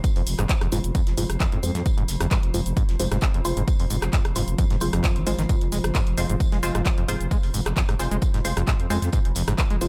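Driving peak-time techno in F minor at 132 BPM, this relentless, hypnotic excerpt rests on a punchy, tape-warm analog kick up front, layered with a produced electronic kit of handclaps, hi-hat, rim click and shaker that pumps under sidechain, plus a very quiet, dry 70s acoustic kit adding fat snare, hi-hat and tambourine. A thick, growling FM bass holds the low end while a squelchy, gritty acid riff with distortion and subtle chorus pumps alongside it, and from 0.7 seconds muted, detuned dub chord stabs drift through phaser and dub echo over a single F minor chord. Behind it all sits an eerie, warbling, metallic drone on F3 with chorus and its own reverb, mellow and set deep in the background.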